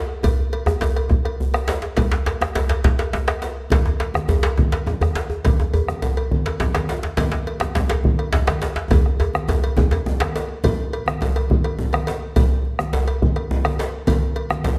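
Set in a reverberant recital hall, this driving, festive West African drum ensemble in a straight 12/8 pairs a dark, dry bombo and a close metallic cowbell with two rattle-laden djembes (one deep, compressed and saturated, the other tight, cracking and up front), while low-tuned, thick-skinned congas arrive at a distance at 3.7 seconds, and a drum fill from 8.9 seconds carries the excerpt into a new section just as the cracking djembe drops out at 10.3 seconds.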